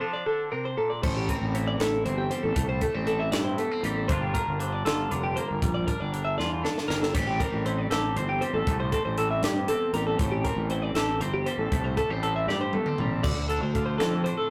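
A straight 6/8 pulse at 79 BPM carries this wistful, intricate math rock and midwest emo excerpt, opening with two twangy twelve-string electric guitars, one playing phaser-tinged chordal accompaniment and the other spinning bright arpeggios up high, before a growly, overdriven fuzz bass and a crisp fusion drum kit with dark cymbals, a high-tuned snare and a punchy kick enter at 1.0 seconds. The harmony moves from C9sus4 through Am7 and Gm7 back to Am7, with drum fills at 6.4 and 12.5 seconds, before settling on Dm7 at 13.2 seconds. Light reverb and tube saturation give the whole a rough rehearsal-room character.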